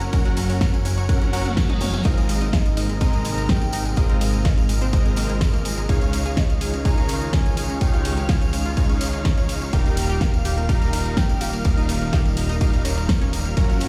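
A hopeful, euphoric progressive house excerpt at 125 BPM opens with a punchy, up-front electronic kick, a thick, detuned analog bass, a pop drum kit with a fat snare and metallic hats, a jingly, distant tambourine, bright supersaw stabs, and a round analog pluck arpeggiating in the background with lush chorus and delay, above a very quiet, breathy pad, while the bass, stabs, pluck and kit pump to the sidechain. After a drum fill and a background reverse cymbal near 1.4 seconds, a soft octave-layered synth lead enters at 2.1 seconds, dark and full-bodied with chorus, phaser, vibrato and a vintage 12-bit grit, and a twinkling granular texture sparkles faintly from 2.7 seconds. The chords move from Gb through Abadd9 and Dbadd9 to Ebadd9, and the dry mix is heard through a big sound system in a bare stone room.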